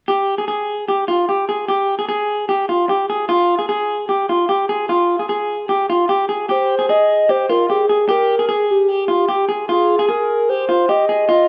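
An electric guitar through a small old amp opens this bright, nostalgic indie pop excerpt at 150 BPM in 4/4. It plays twangy, slightly broken-up arpeggios, fingered over an Fmadd9 chord with a dark, lo-fi edge. At 6.5 s a hollow, woody, clarinet-like synth lead takes the melody up front, its soft square-and-triangle tone carrying a faint noise layer, vibrato, chorus and phaser, and the whole piece sits in a moderate large studio reverb.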